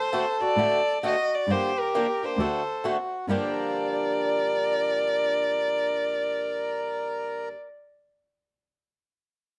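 Fiery and virtuosic, this short excerpt of acoustic string swing in G minor moves at 132 BPM with a swung feel, as a dark, woody bowed violin carries the melody up front with vibrato and portamento over a reedy, close-miked accordion second line and a bright, boxy picked guitar accompaniment, while a bowed cello with soft attack and expressive slides supplies the bass from 0.6 to 3.4 seconds, all captured dry outdoors through chords moving from D7 to Gm7.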